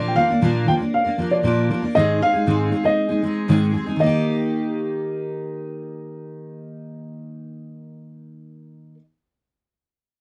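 Easy-going and carefree, this short pop excerpt moves at 118 BPM in a straight 4/4, settled in Eb major. A fingerpicked steel-string acoustic guitar carries the accompaniment from the opening second, double-tracked and sitting up front with a full-bodied jumbo tone, fresh strings and a touch of finger squeak. A dark upright piano takes the melody from 0.1 seconds, its woody, boxy character keeping the tune mellow in a high register. The harmony steps from Bb to Ab before landing on Eb as a new section begins at 4.0 seconds. The sound is dry and close, like a 1970s-style studio recording, with only light reverb around the instruments.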